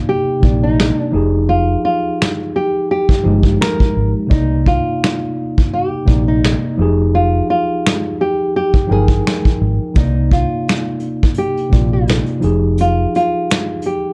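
A dark, hazy mix set in a small, snug room gives this melancholic lo-fi hip hop excerpt its mood, moving at 85 BPM in 4/4 with a lightly swung sixteenth feel over alternating Cm9 and Fm9 chords. A full-bodied, fingerpicked nylon-string guitar carries the melody up front, complete with finger squeak, while a worn, slightly out-of-tune tine electric piano supplies filtered accompaniment beneath it. At 0.4 s a gritty brush kit with finger snaps, hi-hat, punchy kick and snare enters together with a round, foam-muted electric bass, which drops out at 13.0 s.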